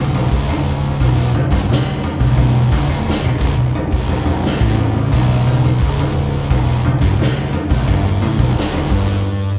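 A raw garage drum kit sits up front in this brooding, heavy stoner and doom metal excerpt at 87 BPM in B minor, its punchy kick, medium-tuned snare and toms sounding saturated and gritty, with a rolled-off top in a bright stone room. Behind it, two thick fuzz guitars pick a dark, distorted riff low on a single B minor chord, joined by a growly, overdriven fingered electric bass with tube saturation. The band plays live in one room with light reverb, and the drums drop out at 9.1 seconds and the bass at 9.2 seconds for a brief break, while the guitars carry on until 9.6 seconds.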